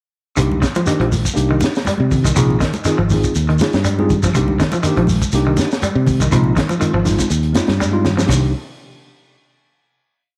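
A crunchy, saturated breakbeat drum kit with a punchy kick and high-tuned snare drives this funky, hypnotic afrobeat piece in C minor at 121 BPM, alongside a round, up-front fingered bass riff, a twangy slightly broken-up electric guitar ostinato bathed in spring reverb, mellow tine electric piano stabs, grainy shekere and soft-handed congas, cycling between Cm7 and a rootless Bb9sus4 until a drum fill at 7.8 seconds leads to a final Cm7 chord at 8.3 seconds.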